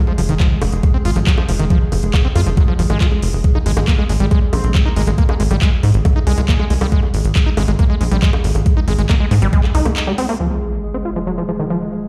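Heard through a big sound system in a bare room, with large studio reverb and a digital sheen, this excerpt of psychedelic trance drives at 138 BPM in F minor with an alien, driving mood. An overdriven, knocking kick and a punchy sawtooth sequencer bass sit up front, joined by a garage drum kit of metallic hi-hats, bongos and handclaps and by a squelchy, resonant acid bass riff with tape echo and sidechain pumping. Behind them, a detuned, pulsing gated texture holds sustained chords over F5 and Ab5, a chorused FM wobble bass surfaces briefly from 4.5 to 6.8 seconds, and after a short break a sub drop lands at 10.4 seconds while a filter sweeps the acid bass.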